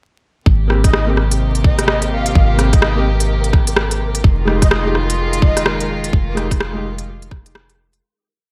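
A breathy, flute-like synth lead sings short, chorused phrases with tape echo over this nocturnal, wistful future garage piece, carried by a tight, muffled two-step kick, crisp shuffled hi-hats and rim clicks, a soft, round 808-style bass and a reedy chamber string pad that both pump against the beat, sparse echoing chord stabs from a felt-muted upright piano with audible action noise, a faint flickering grainy texture holding a high note from 1.3 seconds, and a bed of vinyl crackle and light reverb, before a fade-out begins at 5.5 seconds.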